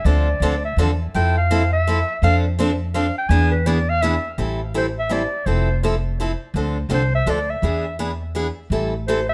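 Swinging and fiery, this brief cut from a longer acoustic string swing piece in A minor moves at 167 BPM in a swung 3/4, with a warm, vibrato-laden clarinet soloing with scooped notes and tape echo over the first 4.4 seconds, a woody, thumpy pizzicato upright bass on gut strings sitting up front, and a bright, boxy picked parlour guitar picking through changes from Dm7 through E7 to Am7 in a moderate studio room.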